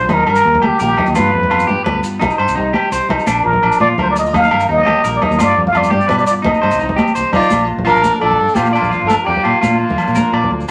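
Warm and carefree, this highlife guitar band clip in a straight 12/8 puts a raspy, growling plunger-muted trumpet up front, its scooped notes and wah-wah carrying the jazz-style melody over a full-bodied fingerpicked jumbo acoustic guitar in the background and a dark, round fingered electric bass. A twangy electric guitar at the edge of break-up plays arpeggios through spring reverb, while ringing agogo bells, high-tuned congas struck with hard hands and grainy, mellow maracas drive the groove. At 7.3 s a nasal, biting fiddle with an airy bow slips in behind as a second line, and the whole short cut sits in a wet studio reverb.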